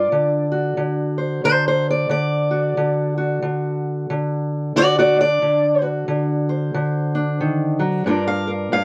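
Acoustic country blues with a smoky, mournful mood and a lilting swing, carried by a lone fingerpicked steel-string parlour guitar whose dark, boxy tone sits up front in a dry, close 1970s-style studio sound with light reverb, moving from D7 to Gm7 across this short cut from a longer piece.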